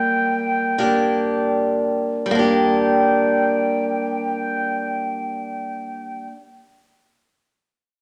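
A pure, wooden baroque flute with vibrato, a soft attack and an unsteady tone carries the longing melody of this haunting Celtic slow air in a free, rubato 3/4 that slows through the opening 2.3 seconds, while a boxy, picked old ladder-braced acoustic guitar with woody old strings accompanies up front, the pair set in a wet, large studio reverb in this short passage cut from a longer piece.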